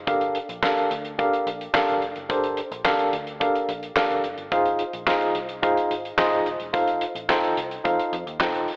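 Danceable and funky, this short cut of early-eighties boogie funk in G minor moves at 108 BPM in a straight 4/4, with a worn, slightly out-of-tune tine electric piano through a combo amp, carrying medium tremolo and slapback echo, sitting up front over Gm9, Ab6 and F7 chords, while a damped 70s drum kit of tight kick, fat snare, hi-hat and handclaps sounds dry and mid-forward, a dark, round, foam-muted picked electric bass sits far back in the mix, and the whole recording is bathed in a wet recital-hall reverb with an odd blend of big-arena and telephone-like coloring.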